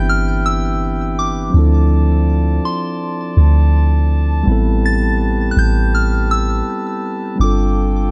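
A deep, round 808-style bass sits up front in this moody, longing contemporary R&B clip at 82 BPM in A minor, its sine-like notes striking fast and decaying into dark lows. A mellow, clean tine electric piano carries the accompaniment while a soft-attack brass ensemble holds classical-style sustained chords, and a pure, warbling FM synth bell sings the high melody through chorus and delay. Over 8.1 seconds the harmony moves from Cmaj7/G through Dm7 and Am9 to G9sus4, framed by a digital ambience.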